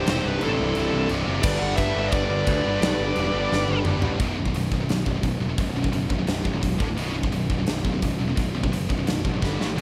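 Up front, a big acoustic rock drum kit in a bright stone room drives this dark, relentless heavy metal passage, its punchy kick, medium-tuned snare, toms, hi-hat, crash and china cymbals opening in half time before a fill at 3.5 seconds pushes into full pace. Over the first 3.8 seconds a dark, distorted high-gain lead guitar carries the melody, with a second lead line tucked behind it through analog delay, while a very quiet pipe organ on a nasal cornet solo stop holds sustained chords in romantic voicing. Beneath, a fuzz-soaked electric bass growls with overdrive, direct and amped, anchoring the low end throughout. Three bright, picked rhythm guitars grind out the riff for the whole stretch: one sits in the background, another is very quiet, and a scooped, double-tracked guitar adds a hollowed edge. The chords move from C and G to power chords on B, D, G and A, and as the harmony turns to G and A at the very end, a last drum fill closes this piece cut from a longer track, all under light reverb.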